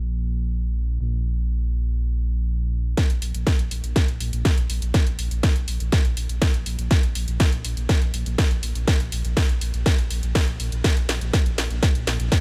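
A straight 4/4 pulse at 122 BPM drives this cinematic, melancholic melodic techno excerpt, which opens on a dark, rumbling detuned saw bass alone, sitting up front with sidechain pumping. At 3.0 seconds a punchy electronic kick and a house kit of cracking, high-passed snare and pumping, filtered hats arrive together for a build-up and drum fill that run to the close at 12.4 seconds, all wrapped in a digital ambience.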